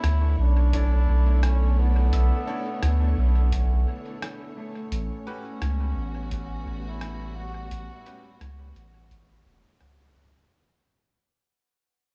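A round, soft sub bass sits up front in this hazy, deep ambient dub fragment at 86 BPM, its triangle-and-square tone thickened by tube saturation. Above it, a clear solo trombone in classical style carries the melody with dub echo trailing its phrases, while a dark, lush string section holds bowed chords with vibrato from a distance. A clean pedal steel guitar, played with fingerpicks and slide, adds arpeggios and volume swells in the background, also sent through dub echo. The groove swings on sixteenths: a muffled, compressed sampler-style kit of hi-hat and rim click sits in small studio ambience with echo, and at 0.7 seconds a very quiet analog electronic kick and a bright, worn upright piano enter, the piano's slightly detuned stabs carrying audible action noise. The harmony moves from Bm11 to A13 at 4.9 seconds, and the recording fades out from 3.1 seconds until it ends at 10.5 seconds.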